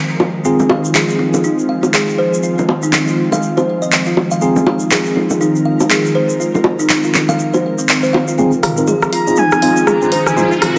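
An ethereal, detuned sawtooth pad on a sustained Fm7 chord and clean tine electric piano stabs through phaser and delay open this driving, warm afro house excerpt, soon joined by round, low-tuned bongos, a grainy egg shaker, woody kalimba arpeggios and an up-front, layered deep house kit with dark hats, before a drum fill and a filter sweep on the electric piano build from 8.4 seconds, a pure, distant flute with vibrato enters at 9.1 seconds and an electronic riser follows at 9.2 seconds, all set in a lush hall reverb.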